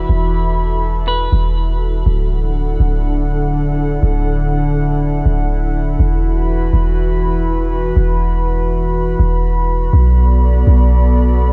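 Dreamy and floating, this half-time hip hop excerpt sets a warbling, nostalgic tape-like pad with chorus over a deep, boomy 808-style bass as a filter sweep shapes the opening two seconds, while a dark, hollow-body electric guitar touches a single delayed note from 1.1 to 2.0 seconds before the chords drift from Esus2 through Dadd9, back to Esus2 and on to Bm7 in light reverb.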